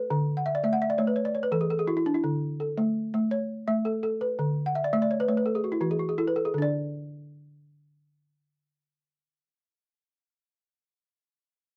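A dry, close recording with a 1970s studio character places a solo balafon up front, its woody, round tone struck with soft rubber mallets and sitting forward in the mids. This joyful, flowing west African traditional piece moves in a straight 12/8 across a span from D3 to F#5, with fills running from 0.4 to 2.2 seconds and again from 4.7 to 6.5 seconds. A new section begins at 6.5 seconds, and the short cut from a longer performance closes at 10.4 seconds.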